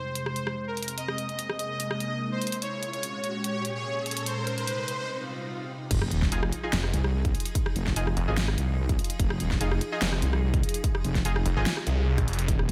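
Driven by a half-time pulse in 4/4, this menacing, chaotic slice of heavy wobble dubstep opens with a build-up in which an evolving, morphing wavetable pad holds sustained chords under a filter sweep, treated with ensemble chorus, phaser, reverb and sidechain pumping, while a smooth, up-front supersaw carries the melody through dub echo. An overdriven dubstep drum kit with a huge snare, hi-hat, rim click and crash cymbal enters almost at once, and background riser, swell and sub-drop effects lift the tension toward a short break at 5.1 seconds. The drop lands at 5.9 seconds with an impact, a punchy layered electronic kick and a heavy, saturated wobble bass thickened with chorus. Bold, bright orchestra-hit-like synth stabs with a cassette-tape tint and dub echo cut through, and a snarling, growling distorted saw bass with a moving notch joins them. The chords move from F minor through Abadd9, Bbm7 and Cm before settling on Fm7 at the drop, all in a close, dry mix that is cut from a longer piece.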